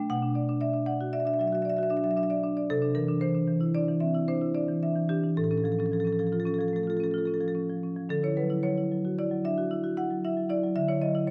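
A solo marimba played with medium hard mallets opens this short excerpt from a contemporary classical piece, its rosewood bars giving a woody, smooth tone that sits up front. The mood is flowing and playful, moving in an asymmetric five-beat metre with a straight feel. The harmony drifts through colourful added-ninth chords and an augmented chord before the music shifts into a new section at 8.1 seconds, landing on a Dadd9 sonority. The instrument ranges from its low register up into its upper bars. A moderate recital hall reverb surrounds the playing, and the overall production is dark and warm.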